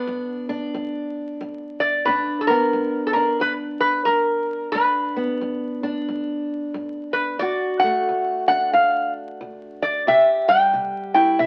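A metal-body resonator slide guitar and a fingerpicked acoustic guitar start together in this short excerpt of soulful, gritty acoustic country blues, set in G major at 90 BPM in 4/4 with a swung eighth-note feel. The resonator carries the melody up front, its slide tone metallic and nasal, played with fingerpicks in a range from A4 to G5. Beneath it, an old ladder-braced acoustic guitar fingerpicks the accompaniment in a boxy voice, sitting lower in the mix, with finger squeak audible on the strings. The harmony rests on G before moving to D at 7.4 seconds and C at 10.1 seconds. The whole duo sounds like a very old 78 rpm record, with vinyl crackle and a moderate studio reverb giving the pair a modest sense of space.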